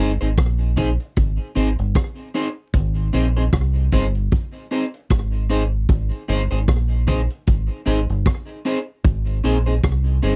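A clean, picked electric guitar and a deep, fingered dub bass open this short roots reggae passage together, with a vintage drum kit joining at 0.4 seconds. The mood is laid-back and sunny, the groove relaxed with a gentle swing on the sixteenths and resting on a single chord. The guitar sits dark and clean in the middle register, dressed in lush chorus and tape echo, while the round, punchy bass is placed up front with a direct, amped tone. The acoustic drums bring hi-hat, kick and rim clicks in a mid-forward sound with a rolled-off top. The dry, close recording has a 1970s studio character with vinyl crackle beneath it, and this fragment of a longer piece runs to 10.4 seconds.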